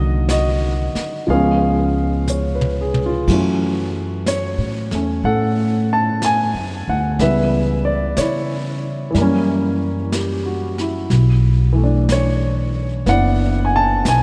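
Soaked in a lush, dreamy hall reverb, this melancholic, smoky jazz ballad fragment moves at a slow 61 BPM in 4/4 with a swung eighth-note feel. An intimate grand piano, its action noise audible, and a woody pizzicato upright bass sit up front, while a vintage brush kit with dark cymbals and a rolled-off top enters at 0.3 s and plays a fill from 2.3 s. The harmony passes through Cm7b5 and Db7 before settling into F# minor at 3.3 s, drifting through F#m7, C#m7b5 and F#7b9 to Bm11.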